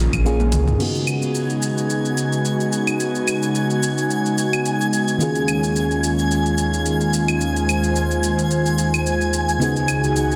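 An airy, breathy pad holds up-front suspended chords through this smooth sunset chillout piece at 109 BPM with a light sixteenth-note swing, joined by a mellow, dark FM electric piano carrying 12-bit sampler grit, tape echo and a filter sweep, a round analog bass that stops at 0.8 s after a brief drum fill, a layered, overdriven deep house kit of claves, crash, hi-hat, shaker and toms, a very quiet deep electronic kick heard only at the opening, and a twinkling granular texture that shimmers in at 1.4 s, with the mix bathed in a lush hall reverb under a dense, heavily limited master.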